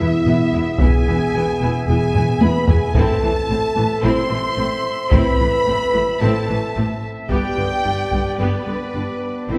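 A straight 4/4 pulse at 110 BPM drives this heroic, relentless cinematic excerpt in A minor, with a close, dry taiko ensemble struck with hard sticks entering at 0.3 s, hitting a drum fill between 2.1 and 3.0 s, and dropping out at 8.4 s. Above it, two violin sections share the upper register, one lush with vibrato and portamento sitting in the background as the melody, the other rich and more distant carrying a second line. A smooth, even viola section supplies accompaniment while a dark, tight French horn section and a clear woodwind section with light vibrato hold sustained chords. The low end comes from a background cello section and a focused double bass section, both bowed with vibrato. The harmony moves from E to Am at 3.0 s and on to G, all bathed in the reverberant glow of a church or concert hall.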